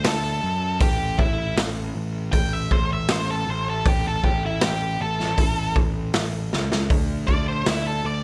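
Dry, up-front and raw, this short cut from a longer blues rock and southern rock power-trio piece swaggers and drives at 79 BPM in 4/4, with a dark octave-fuzz lead guitar soloing from the start through distortion and slapback echo over a D chord that gives way at 0.8 seconds, a punchy, overdriven picked bass, and a gritty, saturated garage drum kit of boomy kick, medium-tuned snare and hi-hat pumping in a small room, with a fill arriving at 6.5 seconds.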